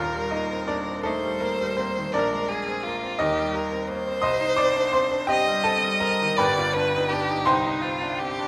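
A solo violin and a grand piano begin together in this brief romantic classical duo, cut from a longer piece and carrying a solemn, elegiac mood. The violin carries the melody between Eb4 and Eb5 with a single player's bowed, focused tone and vibrato, set up front in the mix. Beneath it the piano supplies accompaniment across a broad span from Eb1 to Eb6, its sound brilliant and intimate, with the mechanical action audible and a present, forward placement. The music moves slowly at 56 beats per minute in a rubato 6/8, with the harmony passing through Eb, Bb7, Eb, Cm, G7 and back to Cm. A moderate scoring-stage reverb with a 2.1-second decay surrounds both instruments through to the close at 8.5 seconds.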